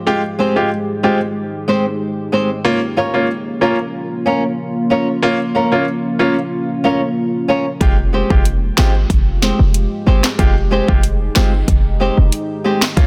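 A dark, fingerpicked flamenco guitar spins hypnotic arpeggios over a clear, intimate baby grand piano with audible action noise and a deep, detuned ambient pad pumping under sidechain, until a punchy 808-style bass and an afro-pop drum kit with deep kick, sharp snare, metallic hats and handclaps drop in at 7.8 seconds to give this tough dancehall excerpt its groove.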